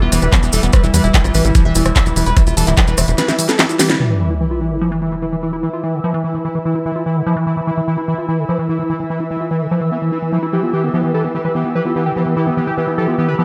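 Psychedelic trance at 147 BPM in E phrygian, this alien, psychedelic excerpt opens with a knocking, up-front electronic kick, a drum kit with cracking snare, bright hats, handclaps and rim clicks, grainy background maracas and a tight, nasal sequencer bass driving beneath a screaming, gritty, guitar-like lead with vibrato, delay and phaser. A drum fill and band accent lead to a sub drop impact at 4.0 seconds, after which the squelchy, resonant acid bass carries on under a long filter sweep, joined throughout by a pulsing, tempo-synced gated texture with chorus and an ethereal, airy pad, all three pumping against the sidechain. The distorted lead returns at 10.5 seconds, and the whole mix sits in light digital ambience.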